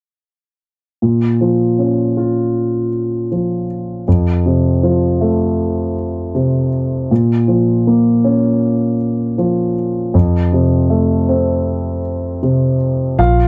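A concert grand piano with a deep low end opens this melancholic, longing pop ballad excerpt at an unhurried 79 BPM in 4/4, playing up front in Bb harmonic minor and alternating between Bbm and F from 1.0 s, before a dark, round, punchy muted electric bass touches in on a low Bb at 13.2 s, all set in a dry, close 1970s-style studio sound with light reverb.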